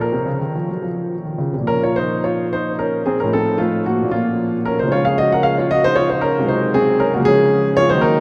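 Flowing and solemn, this short fragment of a baroque-style suite movement for solo grand piano moves in 6/8 at roughly 71-78 BPM, counted in dotted quarters, with a freely breathing rubato. Set in Bb minor, it opens on a brief first section before a longer second one takes over at 1.7 seconds, with the harmony passing through Bbm, F7/A, back to Bbm and onto Db. The concert grand sounds dark and mellow, its deep bass reaching down to A2 while its range extends as high as Gb5. Heard up front and intimate, the instrument has a smooth, vintage character, and the noise of its action is audible beneath the notes. A vast cathedral reverb with a long 5.6-second decay surrounds the playing, so every phrase echoes through the space before the fragment is cut off at 8.2 seconds.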